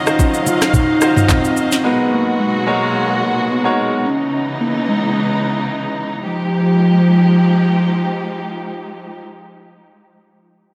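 A hollow, woody clarinet-like synth lead carries the melody from the start, treated with chorus, phaser and delay, over a brilliant grand piano that stops at 4.1 seconds and lush bowed strings that pump against a sidechain. In this deep, late-night amapiano fragment, an electronic R&B kit with a soft kick, sharp snare, handclaps, rim click, shaker and toms plays only from 0.1 to 1.8 seconds, joined briefly by ringing bongos and congas in the background. The mix is soaked in a dreamy church reverb and moves through minor ninth chords.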